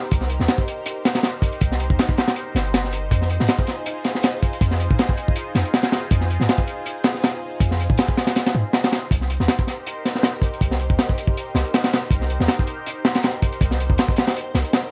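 A crunchy breakbeat drives this frenetic, atmospheric slice of jungle-flavoured drum and bass, its sixteenths carrying a light swing in 4/4. The acoustic kit sits up front with a tight kick, a high-tuned snare and hi-hat, all saturated and gritty, with a dark, rolled-off top and a small-room feel. Beneath it, a deep, boomy 808-style bass with a sine core, a noise layer and a fast attack decays through its low register. A lush, thick unison pad of detuned sawtooth and square waves fades in slowly and holds bright sustained chords, coloured by chorus, phaser and vintage 12-bit sampler grit. The harmony moves from Cm7 to Fm7 at 3.1 seconds and returns to Cm7 at 9.1 seconds, all over a bed of small-room ambience and vinyl crackle in this section cut from a longer piece.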